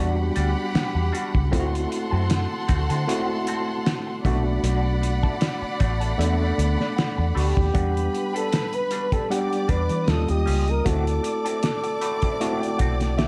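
A distant, lush violin section, worn and slightly out-of-tune overdriven tine electric piano, a slightly broken-up wah guitar tucked in the background and a round, foam-muted bass open this silky 1970s-style soul excerpt, with a muffled, cloth-damped drum kit with a fat snare joining at 0.4 seconds. The electric piano adds fills at 6.6 and 11.6 seconds, and from 7.4 seconds a breathy, dark flugelhorn carries a smooth, soft-attacked melody over swung, minor-key chords. Light reverb gives the mix a dark, warm sheen.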